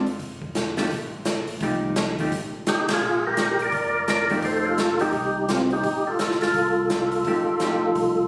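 A soul jazz organ trio opens on an F9 chord, with a percussive tonewheel organ sounding briefly alongside a dark, clean hollow-body electric guitar and a mellow, round organ bass. The drum kit joins at once with a punchy kick, a medium-tuned snare, hi-hat and dark ride cymbal, swinging at 170 BPM in 4/4 with a soulful, bluesy mood in F mixolydian. The lead organ takes up the melody at 2.7 seconds, fat and lightly overdriven, with second-harmonic percussion, key click, chorus vibrato and a slow rotary speaker. A band accent lands just after, as the harmony moves to Bb and back to F9. The picked, compressed guitar comps up front until 5.1 seconds and then returns for a short phrase, while the organ bass stays in the background with its own slow rotary swirl. A moderate studio reverb gives the kit an airy, polished hall quality, though the whole passage has the compressed sound of a phone recording made in the room, and it is cut from a longer piece.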